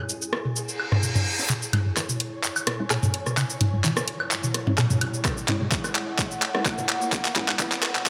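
Hypnotic and quirky, this minimal techno excerpt moves at 128 BPM in 4/4 with a light 16th-note swing, resting on a C# minor chord. It opens on a warbly, nostalgic tape-like pad with chorus and a grainy, flickering granular texture, both sitting in the background and pumping against the sidechain, while a bright, up-front garage kit of cabasa, handclaps, hi-hat and rim click plays alongside an overdriven analog drum machine of rim clicks, toms and woodblock. A faint acoustic kit with a high-tuned snare adds hi-hat and snare only until 1.5 seconds, as a reverse cymbal leads into a build-up. From 1.5 seconds a squelchy, resonant blip pluck riff with ring modulation, phaser, 12-bit grit and digital delay takes hold, joined by muted, full-bodied dub chord stabs drenched in lush chorus and dub echo, while a riser, a drum fill and a filter sweep carry the build forward. A punchy analog kick finally arrives at 5.2 seconds, and a moderate hall reverb lends the mix a spacious sheen.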